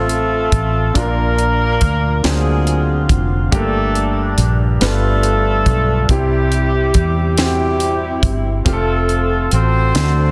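A dark horn section carries the melody in octave doubling, its light vibrato and roomy, slightly distant tone still sitting up front in this short, hopeful slow gospel passage in a straight 6/8. Beneath it, a clear grand piano with a smooth, vintage character and long sustain fills out the harmony, moving from F through Bb, an altered D7, G minor and G7 to C before settling back on F near 8.7 seconds. A fingered electric bass, direct and amped with a foam-muted, warm tone, anchors the low end up front. A crisp fusion drum kit with an airy, polished studio sound, high-tuned snare and punchy kick, along with hi-hat, enters at 0.1 seconds and keeps the soulful pulse steady. A small room reverb surrounds the parts, and the dense, heavily limited modern master gives the cut-down passage a full, close presence.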